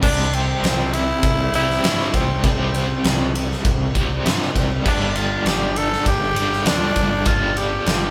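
A raspy, gritty tenor saxophone carries the melody with light vibrato and scooped notes in this swaggering classic rock excerpt at 100 BPM, riding over a huge arena drum kit with a fat snare, punchy kick, crash and ride cymbals set up front in a big room. A bright, double-tracked overdriven guitar picks a crunchy riff through tremolo, while a fuzzed, overdriven electric bass holds down the low end. The band plays live in one room with light reverb, moving from C to G5 at 4.9 seconds.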